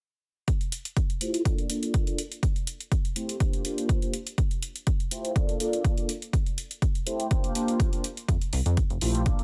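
Set in a digital ambience, this short cut from a filtered disco house track is funky and feel-good at 123 BPM in F major, with a light swing on the 16ths. A punchy, overdriven electronic kick sits up front from 0.5 s beside an analog, overdriven hi-hat with sidechain pumping. At 1.2 s a mellow synth brass enters with dark, round, detuned sawtooth chords moving through Fmaj9, Bbmaj7, Am7 and C9sus4, colored by chorus and phaser, pumping, and shaped by a low-pass filter sweep that runs throughout. At 8.3 s a plucky analog bass arrives, its pulse-wave tone fast in attack and decaying, filtered and pumping between F1 and F2.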